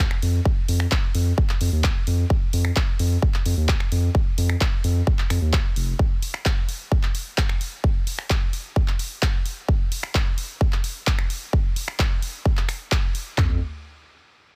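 A dense, heavily limited modern master in a digital ambience carries this anthemic, emotional festival progressive house excerpt at 130 BPM in a straight 4/4, where a deep, thick, saturated sub bass with sidechain pumping sits up front from F1 to F2 until 5.9 seconds and briefly returns at 13.4 seconds, while two layered, produced big-room dance drum kits in small room ambience supply a punchy up-front kick, toms, handclaps, finger snaps and hi-hat.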